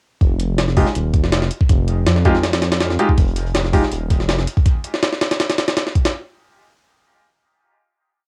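A heavily chopped, pitched-up breakbeat on a gritty, compressed sampler-style jungle kit with a thumpy kick and high-tuned snare drives this dark, atmospheric drum and bass piece at 162 BPM in F minor, together with a deep, rumbling detuned saw bass with tube saturation sustaining long gliding notes until 4.5 seconds, sparse, brilliant grand piano chord stabs over F7(no3) carrying cassette tape and dub echo as one shape moves in parallel, and a very quiet, saturated looped breakbeat on a small-room acoustic kit with a rolled-off top entering at 3.2 seconds, the whole short piece one continuous drop captured dry on a home cassette recording.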